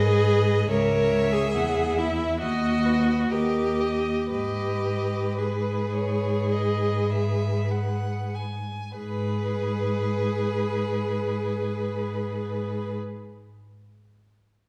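A string quartet opens together at 0.0 s in a slow, rubato romantic movement in G-sharp minor, its mood melancholic and solemn, with the tempo drifting between 47 and 73 BPM in 4/4. The first violin carries the melody in a focused, rich bowed tone with vibrato, while the second violin adds a second line, smooth and even, placed close. Beneath them, the viola's clear, focused accompaniment and the cello's bowed bass both sit up front and close, giving the lower voices a firm presence. The harmony moves from G-sharp minor to C-sharp minor and B over D-sharp before settling back on G-sharp minor, and the playing slows through the first 9.0 seconds before a new section begins. A wet recital hall reverb places the ensemble further back in the room, and the four players stop at 13.0 s in this passage cut from a longer piece.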